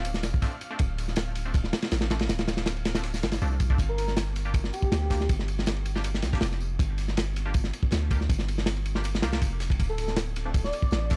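A small-room, cassette-tinged sound frames this atmospheric, frenetic drum and bass and jungle fragment, driven up front by a crunchy, gritty breakbeat kit with a punchy kick, dark cymbals and a rolled-off top, while a deep, mellow sine 808-style bass with tube saturation holds long notes beneath it. A tambourine and fat snare sit in the background within a pumping room sound, and nasal, band-passed sawtooth chord stabs with chorus and dub echo glint over a Dm7 to Gm7 to D5 progression. A breathy, wind-like tuned noise texture drifts through the opening until 3.8 seconds, after which a soft, dreamy, detuned lead with vibrato, chorus and dub echo appears at 3.9 seconds and returns at 9.9 seconds.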